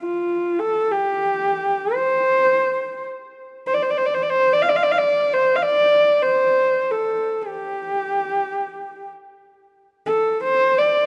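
A lone horsehead fiddle opens the recording at 0.0 s and carries it alone through 11.1 s, its bowed horsehair strings sounding dark, woody and husky from a single player placed up front. This short passage of Mongolian folk music, cut from a longer piece, has a proud, vast mood. The fiddle moves between F4 and F5 with vibrato and portamento, and its upper register stays smooth. A moderate plate reverb with a 3.2-second tail gives the instrument space. The sound has the rough character of a home demo mix.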